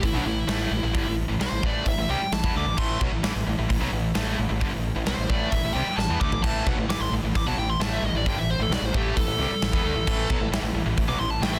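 A dense, heavily limited studio mix carries this driving, aggressive hard rock passage, cut from a longer piece, where a dark, smooth overdriven lead guitar solos throughout over a high-gain distorted riff guitar, a very quiet overdriven second guitar also playing a riff, a growling fingered bass with overdrive, and a huge arena drum kit with bright cymbals and a punchy kick up front that plays a fill at 6.0 seconds.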